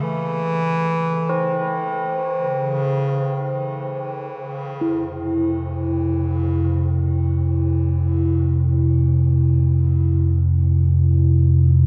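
An up-front bass clarinet with a smooth, soft-attack tone opens this dark, ominous ambient drone in free time, its delayed melody sounding over mellow tubular bell arpeggios and a ringing bronze singing bowl with slow beating, until the bass clarinet stops at 4.2 seconds, the bells fade in from 4.8 seconds and a deep, rumbling, detuned drone with lush chorus and ring modulation enters at 5.1 seconds, all within a huge reverberant space.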